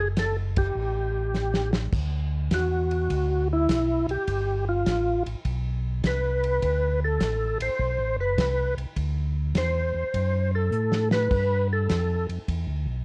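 A swinging 102 BPM groove in 4/4 drives this greasy soul jazz organ trio excerpt in D mixolydian, with a dark, dry drum kit of tight kick, snare, hi-hat, ride and crash adding fills at 1.4 and 10.7 seconds. Up front, a full, lightly overdriven tonewheel organ with second-harmonic percussion and slow rotary speaker carries the melody and takes a solo from 1.9 seconds over chords such as D69, G9 and D13, while a mellow, round tonewheel organ with chorus vibrato plays the bass line. Light reverb and worn, warbly cassette tape pitch drift color the recording.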